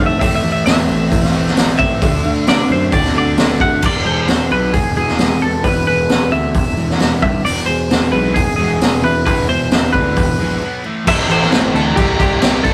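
A raw, gritty garage drum kit with a punchy kick sits up front in this brooding, angsty quiet-loud alternative rock excerpt at 133 BPM, as a twangy, clean twelve-string electric guitar carries the melody over a growly overdriven fuzz bass, faint acoustic guitar arpeggios with finger squeak, a very quiet fuzz guitar riff and a scooped high-gain guitar in the background that drops out between 3.8 and 7.5 seconds, while a double-tracked distorted guitar joins at 11.0 seconds over Am and C chords in a rough rehearsal-room sound with light reverb.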